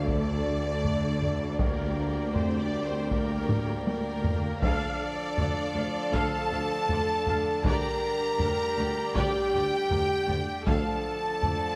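Set in a straight 4/4 at 79 BPM, this dramatic, epic orchestral film-score passage in D minor is cut from a longer piece and runs just under 12 seconds, moving between D minor and G minor over a D bass. Solo taiko drums struck with hard sticks sit at the front with a close, small-room sound and play a fill from 3.5 to 4.6 seconds. The violins carry the melody with light vibrato and a smooth, even tone, while a second violin line and an airy flute ensemble add a second line in the background. Mellow French horns hold sustained chords prominently, joined by a very quiet, bright trombone section and a rich studio string section, while a viola section adds expressive accompaniment with portamento and a mellow trumpet section punctuates with tight stabs. Underneath, cellos, double basses and a punchy tuba anchor a low D, the double basses playing with a soft attack. A moderate scoring-stage reverb gives the lush bowed strings and brass a sense of grand space.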